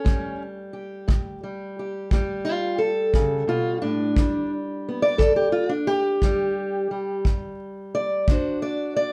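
A slow, straight 12/8 pulse at 58 BPM in dotted quarters sets up this swaggering, laid-back acoustic country blues, a short passage cut from a longer piece. A fingerpicked steel-string parlour guitar carries the melody and solos throughout, its fresh strings, boxy body and audible finger squeak sitting up front with a touch of plate reverb as it ranges from D2 to D5 over A7(no3), G5 and D7. A tight, up-front kick drum with brushes joins at 0.1 s and stops at 8.4 s, all set in a wet, reverberant studio room heard from further back.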